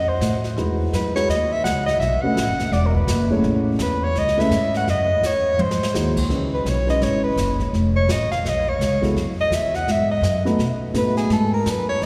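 A warm, up-front soprano saxophone carries this smoky, late-night small-group swing excerpt at 168 BPM, its subtone and light vibrato coloring scooped notes as it moves from E major into a C# minor solo at 6.3 s. A woody, growly pizzicato upright bass sits close beside it, while a dark, mellow concert grand piano comps underneath and a brushed jazz kit with boomy kick and dusky cymbals adds a short fill at 5.6 s. The whole group rings out in the long, wet reverb of a church or concert hall.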